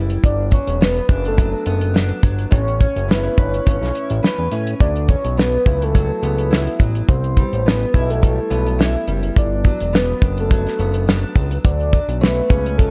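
Hazy and dreamy, this excerpt of indie bedroom pop moves at 105 BPM in 4/4 with a light 16th-note swing, set in D major. A fat, saturated analog bass with a nasal, detuned sawtooth edge sits up front beside a damped 70s drum kit, whose dry kick, snare and hi-hat enter at 0.1 seconds. A picked steel-string acoustic guitar, full-bodied with audible finger squeak, carries the accompaniment through analog chorus and vibrato. A soft octave-layered synth lead, round and subtly chorused, holds the melody from 0.2 seconds, while a jingly tambourine sits in the background from 0.8 seconds. The harmony drifts through Gmaj7, A9, D69, Cmaj7 and back to Gmaj7 before arriving on Dmaj7, inside a dark, warm production with light studio reverb.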